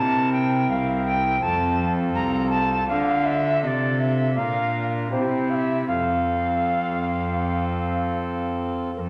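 A recital hall's lush reverberation wraps this short, radiant and serene fragment of a baroque-style sonata movement in F major, moving at a calm 77-82 BPM in straight 4/4 and tuned slightly low at A4 = 437 Hz. An airy alto recorder carries the melody up front, its wooden tone marked by chiff, vibrato and expressive tonguing, while a pipe organ on thick foundation stops fills out the continuo with a romantic voicing. A single bowed cello with a reedy, gut-string period sound sits close beneath them on the bass line as the harmony passes from C7 through F, Dm, Bb and C back to F by 5.9 seconds.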